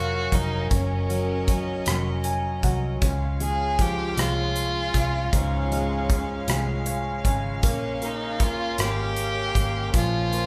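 A swaying six-eight pulse at 52 BPM, counted in dotted quarters, carries this romantic pop ballad, tuned to A4 = 437 Hz and cut from a longer piece. An acoustic drum kit enters at 0.3 seconds, airy and polished with a punchy kick, hi-hat and rim click, sitting up front. Beneath it a vintage muted electric bass adds a dark, round, amped tone. A single violin carries the melody with rich, smooth, even vibrato, while a close chamber string section holds sustained chords in a reedy, gut-string period style. A clear, intimate grand piano, with its action noise audible, accompanies and adds fills at 1.9 and 6.5 seconds as the harmony moves from Gbmaj7 to Db and on to Bbm7, and the band plays live in a large studio room with moderate reverb and some lossy compression artefacts.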